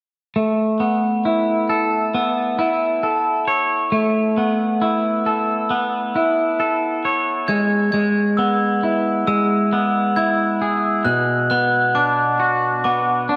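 In a straight 4/4 feel, this euphoric, cinematic rock fragment opens at 0.4 s with a clean, twangy electric guitar playing up-front fingered arpeggios through analog delay and slapback echo over Aadd9, E/G# and Bm, before a dark, bell-like glockenspiel struck with soft plastic mallets joins at 7.5 s with its own delayed, echoing arpeggios high above, all bathed in a lush hall reverb that gives a big arena sound.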